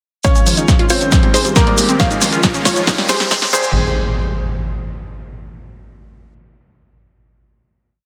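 Euphoric and soaring, this short uplifting trance build stacks a bright, detuned sawtooth pluck riff in thirds and sixths with digital delay and sidechain pumping over a brilliant, worn grand piano repeating the riff in octaves, a faint, clear concert grand doubling it in unison, an airy unison pad coloured by chorus, phaser and 12-bit sampler grit, and a ring-modulated pluck arpeggio with cassette tape character, while an up-front four-on-the-floor electronic kick, a punchy analog drum machine's hi-hats, snare and crash, grainy hand-played shekere sixteenths and a fat, very quiet galloping analog bass entering at 0.4 s drive a filter-swept drum fill toward a riser that arrives at 1.3 s and lands in an impact as the final hit at 3.8 s, all set in a concert hall reverb.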